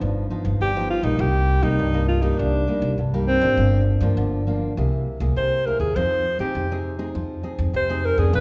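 A breathy alto saxophone with light vibrato and a smooth top carries the jazz-style solo melody from 0.6 seconds in this festive, joyful samba and choro fragment at 101 BPM, set over a dark, full-bodied fingerpicked nylon-string guitar in deep classical style and an up-front, woody pizzicato upright bass moving through G7alt, Cm7, Gm7, C7b13 and Fm7, all bathed in the wet reverb of a church or concert hall.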